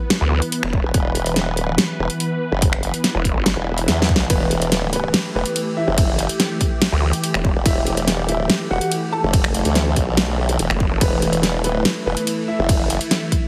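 Squeezed into a heavily compressed, radio-like sound with a light touch of reverb, this cut of heavy wobble dubstep moves at 143 BPM in a half-time 4/4 feel, aggressive and menacing in E minor over a single Em chord. Huge, detuned sawtooth supersaw chords sustain throughout, bright and lush, shaped by phaser, a moving notch, sidechain pumping and a low-pass filter. Two up-front wobble basses drive the low end through chorus and overdrive: a sawtooth-and-sine formant-sweep bass runs nearly the whole way, while a nasal, resonant vowel-sweep bass cuts in for short bursts, the first from 0.2 to 3.5 seconds. The dubstep kit brings a massive snare, metallic hats, ride cymbal and finger snaps with a tape-colored, forward presence, riding on a punchy, overdriven electronic kick re-recorded in a small room. A drum fill and a faint electronic swell lead to the entrance at 4.3 seconds of a clear, boxy baby grand piano, which carries the melody through digital delay.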